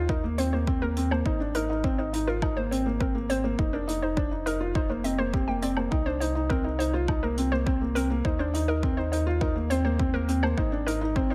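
Moving and melancholic, this short cut from a longer piano and strings electronica piece moves at 103 BPM in a straight 4/4, with chords cycling through Eb5, Abadd9, F5 and Cm7. A felt-muted upright piano carries the riff up front, its soft, boxy tone marked by audible action noise and treated with tape echo. Beneath it, a round analog bass holds the low end with a deep, dark, sustained sound and sidechain pumping. A warbly, dusty pluck with a lo-fi, filtered character plays arpeggios set lower in the mix, colored by chorus, cassette tape wear, tape echo and the same pumping. An overdriven, layered electronic kick gives weight, while a natural-sounding hi-hat and woodblock played with brushes enters at 0.4 seconds and sits faintly in light reverb and small-room ambience.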